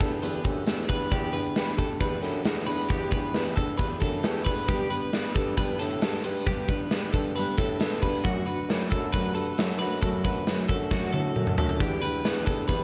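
Restless and bittersweet, this jangly indie pop piece, cut from a longer track, moves in a straight 4/4 over chords that shift from Em7 to G, then D/F#, and back to Em7. A big rock drum kit sits up front, its punchy kick and medium-tuned snare ringing in a large room alongside hi-hat and toms, with a fill at 10.9 seconds. A full-bodied, fingerpicked dreadnought acoustic guitar carries the accompaniment with a slapback echo, while a compressed, twangy twelve-string electric guitar spins clean, picked arpeggios above it. Underneath, a dark bassoon plays the bass line in a classical style, smooth on top with light vibrato and tucked into the background. A jingly tambourine enters faintly at 11.8 seconds, distant and very quiet, as the lush hall reverb gives the whole mix a big arena sound.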